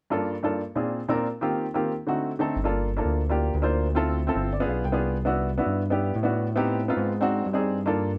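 Closely miked and nearly dry, this short cut from a longer Afro-Cuban jazz piece has a sophisticated, driving mood, with a straight feel in four. An intimate baby grand piano comps through rich extended chords such as Gm9, Cmaj9#11 and Ab7#11, its natural, short-sustained tone carrying audible action noise, and it breaks into a fill at 4.2 seconds. A mellow, evolving synth bass of blended sawtooth and square waves enters up front at 2.6 seconds, sustaining its notes with a touch of vibrato.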